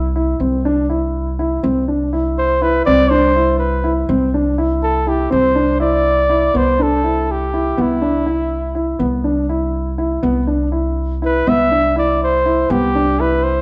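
Pulsing in an uneven 5/8 at 244 BPM counted in eighths with a straight feel, this playful, hopeful chamber piece in C major opens on a dark, mellow concert grand piano rolling out short-sustained arpeggios over a thumpy, woody pizzicato upright bass holding low on gut strings. A warm flugelhorn takes the solo melody from 2.4 seconds with light vibrato and a smooth top, pausing at 8.8 seconds and returning at 11.3 seconds, while the harmony shifts from C to Cmaj7 at 6.6 seconds. Everything sits in a moderate recital hall reverb, colored by the worn, warbling pitch drift of old cassette tape, in a fragment cut from a longer work.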